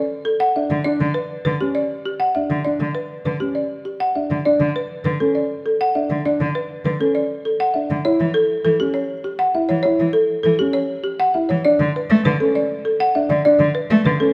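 A woody, rustic folk marimba opens this propulsive, bright minimalist classical excerpt, carrying the melody up front at 100 BPM in a straight 3/4 feel in D major. A dark, mellow grand piano joins with arpeggios at 0.6 seconds, and a rich, bowed solo cello enters at 0.7 seconds with expressive vibrato, soft attacks and portamento as up-front accompaniment. The harmony moves through rootless Bm7 and Em7/D chords to A7 and Bmadd9/D, all set in a moderate scoring-stage reverb.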